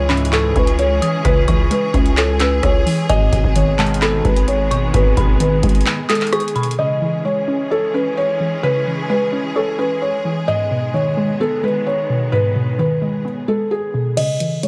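A felt-muted upright piano with audible action noise carries the melody through tape echo over a warbling, dusty pluck, distant bowed strings, an eerie detuned synth bell and a growling 808-style bass, opening this menacing, dark half-time trap cut in C# minor at 130 BPM, where a booming analog drum machine with metallic hats and 12-bit grit and glossy retro polysynth stabs drive the first half until the bass drops out at 5.9 seconds and the drums and bell fall away at 6.8 seconds, leaving piano, pluck and lush strings to cycle between C#m and G#m in a digital ambience before the drums return with the kick muted at 14.2 seconds.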